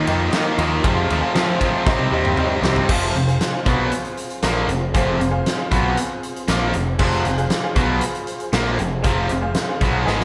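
A big arena sound steeped in lush hall reverb carries this swaggering, brooding classic rock cut in F minor at 117 BPM, with a huge arena drum kit up front, its fat snare and punchy kick driving a straight 4/4. Three guitar riffs sit behind it (a crunchy overdriven guitar with phaser and slapback echo, a double-tracked distorted guitar kept very quiet, and a bright overdriven electric), all above a growling, overdriven electric bass. A jangly, detuned honky-tonk upright piano with slapback echo joins the drums for a fill from 1.9 to 2.9 seconds, while a round, dark tonewheel organ holds chords through its rotary speaker and a boxy acoustic archtop guitar, complete with finger squeak, drops out at 2.9 seconds.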